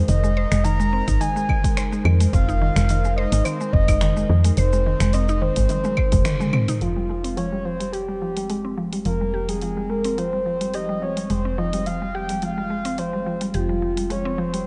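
A woody, round FM bass sits up front in this hypnotic organic downtempo excerpt at 107 BPM in F minor, tuned to A4 = 435 Hz, with a swung 16th-note feel under a breathy, flute-like synth lead carrying the melody through lush chorus, vibrato and tape echo. A mallet-like synth pluck plays arpeggios with chorus and tape echo, an ethereal pad holds sustained chords in the background with ensemble chorus and sidechain pumping, and a deep house kit of claves, finger snaps, hi-hat, shaker and toms keeps time, joined by a punchy electronic kick from 1.1 to 6.2 s. A drum fill and band accent lead into the second section at 6.8 s, where the harmony moves from Ab/F to Fmadd9 and a filter sweep runs across the pluck, all set in a dark production with a moderate scoring-stage reverb.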